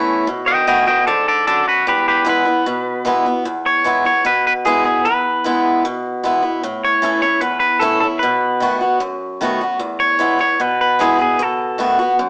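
This upbeat, retro rock piece moves at 151 BPM in a straight 4/4 and settles into E major from 3.5 s. A picked, swing-style acoustic guitar carries the accompaniment up front, with a boxy tone and audible finger squeak. A twangy electric guitar enters at 0.5 s and takes the melody in a bright, clean voice, opening with a short solo over the first few seconds before the next section begins. The chords move through B7, E and A. The two guitars sound like a band playing live in a stone room with moderate reverb, heard through a small speaker, giving the clip a lively, vintage character.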